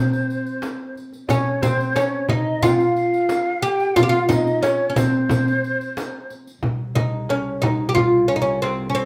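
Longing and soulful, this excerpt from a longer Arabic maqam ensemble piece moves at a straight 90 BPM in 4/4 in C maqam kurd. An up-front, woody, plectrum-plucked fretless oud carries the melody, while a distant, breathy ney with unsteady vibrato traces a second line above it until 6.3 s, over a crisp, saturated metal-shell darbuka, a small close-miked frame drum in the background and a faraway riq with bright jingles. At 6.6 s a dark, bowed sul tasto cello slips in on a low C drone, all captured by a band playing live together in one large studio with moderate reverb.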